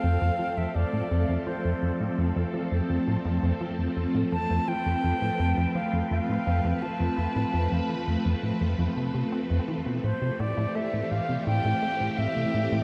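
Ambient, sequencer-driven space music with an expansive, cosmic mood, where a punchy, wave-folded analog bass riff sits up front beneath swirling, warbling string-machine chords with chorus and phaser and an airy, reedy concert flute melody trailed by tape echo, all moving from F to Am7 at 10.0 seconds inside a dark production drenched in huge reverb.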